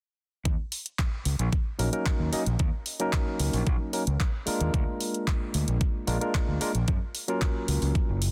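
Nu-disco in a sensual, cosmic mood, this short cut opens at 0.5 seconds with a growling, overdriven fingered electric bass sitting bright and up front over a knocking electronic kick and a pop drum kit of handclaps and hi-hat, both overdriven and re-recorded in a small room. From 1.8 seconds a barky tine electric piano, clean through a combo amp, joins with sidechain pumping, a low-pass filter and analog delay, while the harmony moves through Ebm7, Bb7 and Gbmaj7. The mix is dry, dense and heavily limited.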